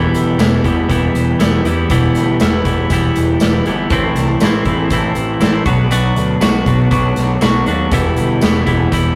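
Indie rock at 120 BPM in E minor, moody and bittersweet, this short cut from a longer piece sets a bright, twangy twelve-string electric guitar riff up front against a fuzzy, overdriven picked bass and a big acoustic rock kit with punchy kick, medium-tuned snare, hi-hat and tambourine. The chords move from Em to Am at 3.9 seconds, then Bm, returning to Em at 7.9 seconds. It sounds like a rough rehearsal-room take, with a short, wet booth ambience and warm saturation.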